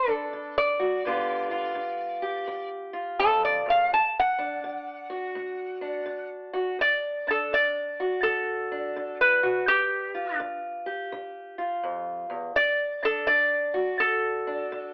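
Swung eighths in 4/4 drive this gritty, rollicking acoustic country blues duo, where a metallic, nasal lap resonator guitar played with slide and fingerpicks carries the melody up front over a dark, woody, boxy fingerpicked steel-string parlour guitar on old strings, both playing throughout this short cut from a longer piece under light reverb and a telephone sound.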